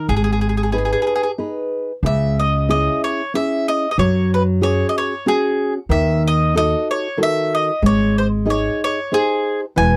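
A bright, double-strung mandolin carries the melody of this romantic, wistful Italian folk serenade in 3/4, sitting up front alongside a fingerpicked nylon-string guitar with audible finger squeak and a woody, thumpy pizzicato upright bass, in a dry, close 1970s-style studio sound cut from a longer piece.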